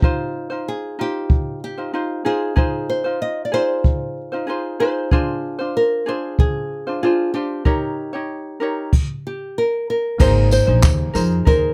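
A fingerpicked nylon-string guitar carries the melody from the start, its woody, small tone from old strings sitting up front beside a bright, light fingerpicked ukulele and a jazz brush drum kit. This short, tender and reflective acoustic pop excerpt moves at 94 BPM in a straight 4/4. The brushed kit has a dark, smooth character with shaded cymbals, a boomy kick, handclaps, a crash and tambourine, its warm, rolled-off top sitting at the front. The chords move from Fm7 through Dm7b5 to Eb7, and at 10.2 seconds the harmony opens onto Abadd9 as a new section begins. There a woody, thumpy pizzicato upright bass on gut strings arrives up front, while a mellow felt-muted upright piano and a jingly, vintage tambourine join quietly in the background, all within light reverb and close, detailed microphones.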